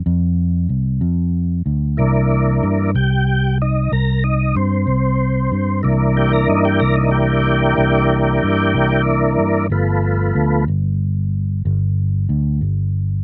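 Laid-back and gritty, this short blues piece, cut from a longer performance, moves in a slow 12/8 with a straight feel. A fingered electric bass opens at 0.1 seconds over an F5 harmony, its dark, round, punchy amplified tone sitting up front in the low register. At 2.0 seconds a tonewheel organ enters with sustained chords, smooth and clean through a slow rotary speaker and chorus vibrato, also placed close to the listener. The organ carries the solo, its held voicings starting on C7 and moving to G7 at 9.7 seconds. The organ drops out at 10.6 seconds, leaving the bass to carry on until the end at 13.2 seconds. The sound is dry and open-air, with little reverb and a direct presence.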